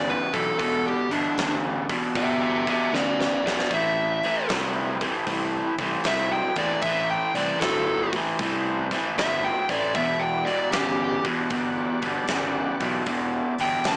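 Heard through a small-speaker sound with a light touch of small-room reverb, this heavy, smoky excerpt is cut from a longer blues rock and southern rock piece with a swung, power-trio feel in four. A bright, double-tracked electric guitar sits up front, its overdriven, picked riff low in the range and compressed. A dark, fuzz-laden lead guitar carries the melody with tape echo. Beneath them, a growly fuzz bass played with the fingers adds punch, while a very quiet, gritty tonewheel organ holds thick sustained chords with key click, percussion and chorus vibrato. The huge arena drum kit comes in just after the start with a fat snare, punchy kick and hi-hat, and plays a fill at 2.9 seconds before the harmony moves from Em7 to Am7 at 3.7 seconds, returning to Em7 at 9.9 seconds.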